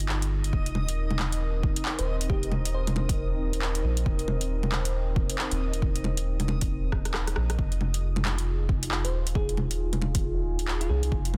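A deep, round dub sub bass sits up front in this wistful, rainy future garage excerpt, its soft triangle and square-wave tone thickened by tube saturation and pumping against the beat at 136 BPM in 4/4 with a swung 16th feel. A layered, overdriven deep house kit of bongos, handclaps, metallic hi-hats and rim clicks sits just as close, joined by a punchy, overdriven electronic kick, both set in a small room. Underneath, a dark analog pad of sawtooth and triangle with a sub octave holds slow-attack chords through chorus, phaser and sidechain pumping, moving between Fm7 and Cm7/Eb in F minor. A reversed, granular texture hovers bright and dreamy in the background until it stops at 7.6 seconds, just after a drum fill. A sparkling, bell-like FM electric piano with a noise layer offers brief mellow phrases through chorus and tape echo at 2.0 and again from 9.0 seconds. The mix is dry, dense and heavily limited, cut from a longer piece.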